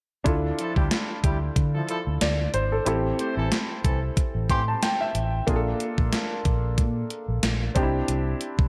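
Dramatic and moody, this 1980s-style pop excerpt with a light sixteenth-note swing pairs an up-front concert grand piano, clear but worn with deep lows, and a round, punchy foam-muted electric bass over a thumpy, overdriven drum machine with a gated reverb snare, while a distant, roomy horn section adds stabs until 4.6 s and the piano plays a fill from 4.2 s, all in a dark production moving from Dmadd9 through Am7 and Bbmaj7 to Cadd9.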